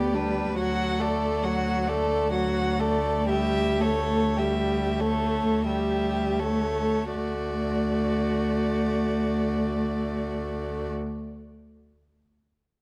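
A serene, lyrical slow movement for string quartet in D major opens with all four bowed players together in a rubato 3/4, moving between 38 and 72 BPM and slowing through its first 7.1 seconds over G/D, D and A7/D harmonies. The rich first violin sings the smooth, even melody with light vibrato, above a dark, intimate second line played sul tasto and a viola accompaniment full of vibrato and expressive portamento. Up front, the cello holds a soft, airy D2 in the bass, and a moderate recital hall reverb frames this fragment as it settles onto D at 7.1 seconds.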